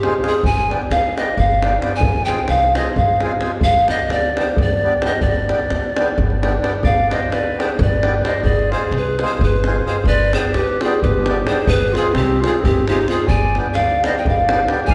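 Bittersweet and fiery, this Balkan wedding-band snippet in 7/8 sets a breathy bamboo pan flute up front, its crisp chiff and vibrato carrying the melody over reedy, full accordion, woody pizzicato upright bass and a deep davul. At 6.8 seconds a clear, classical-style clarinet joins with a second line as the harmony sways between G and Fm/G. The players sound set back in a concert hall, with a lush, lingering reverb.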